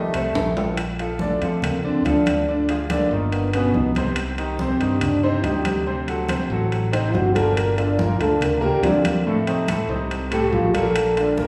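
A veiled, distant trombone with bucket mute, vibrato and scooped notes takes a jazz-style solo from 0.8 s in this lively, sunny Afro-Cuban jazz cut at 141 BPM in Bb major, following a brief mellow bassoon note and a drum fill at 0.3 s, over brilliant, up-front grand piano, growly fingered electric bass, thin-skinned congas in the background and ringing, dry metal-shell timbales, with a wet recital-hall reverb.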